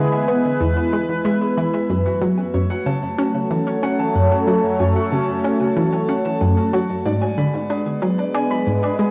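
Cosmic and mysterious, this excerpt of sequencer-driven ambient space music moves at 93 BPM in a straight 4/4 in F# minor, with chords shifting from E to F#m and then G#dim at 7.1 seconds. An airy, bright, resonant pad of detuned sawtooth layers with a noise texture holds sustained chords up front, while a round analog pluck with a fast attack drives a riff in the low register, both thickened with chorus and shimmer reverb. A fingerpicked Celtic harp adds ringing arpeggios in tape echo, and quiet electronic cabasa and woodblock enter at 0.1 seconds, all wrapped in a wet ambience and the soft grain of a cassette home recording.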